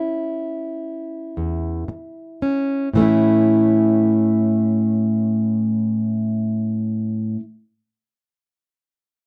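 A fingerpicked, plugged-in jumbo steel-string acoustic guitar sits up front, its fresh strings giving a full-bodied tone to this brief, nostalgic and hopeful folk excerpt, cut from a longer piece. The opening phrase slows down over its first 2.9 seconds on a rootless A chord, then settles onto a full A chord for a second phrase that runs until the guitar stops at 7.4 seconds. The dry, close 1970s-style studio sound carries light reverb.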